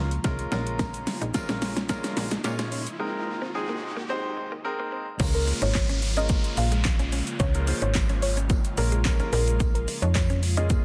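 A summery, euphoric dance-pop excerpt at 109 BPM in Db major, where a build-up led by a drum fill and an electronic riser gives way at 5.2 seconds to a drop, with a punchy, overdriven pop drum kit and a snappy, metallic FM slap bass up front, a clear baby grand piano and a breathy pad pumping under sidechain, a clean, direct-recorded electric guitar riff in the background, a very quiet, jingly tambourine, and a soft, round, chorused pluck melody with tape echo entering for the drop, all finished with a dense, heavily limited master and light reverb.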